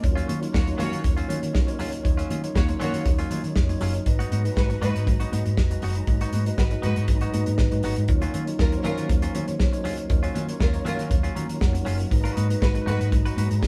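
A sultry, glamorous disco groove at 119 BPM in Eb minor opens with an up-front, tight soul drum kit, a round, dark hollow-body bass, twangy, clean guitar recorded direct, a mellow tine electric piano with phaser, a lightly overdriven tonewheel organ with chorus vibrato and slow rotary speaker in the background, and a lush, bowed studio string section carrying a second line, while very quiet, bright congas join at 0.2 s, the band playing live in a moderate stone room as Ebm9 and Abm7 alternate across this cut from a longer piece.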